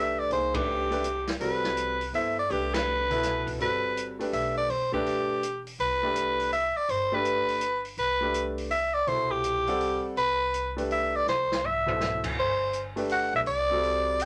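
A swung waltz pulse at 164 BPM in 3/4 drives this short modal jazz excerpt in C lydian, its searching, hypnotic mood resting on a single Cmaj9#11 harmony. Up front, a close-miked soprano saxophone carries the melody between G4 and F#5 with a raspy, growling tone, breathy edges and light vibrato. A concert grand piano with a smooth, vintage character and deep bass supplies the accompaniment, while a woody pizzicato upright bass sits low in the mix between E1 and G2. The acoustic drum kit comes in at 0.3 seconds with dark cymbals, a medium-tuned snare and a boomy kick, and the band hits accents at 0.5 and 2.7 seconds before a drum fill arrives at 11.3 seconds. A moderate small-room reverb surrounds the ensemble.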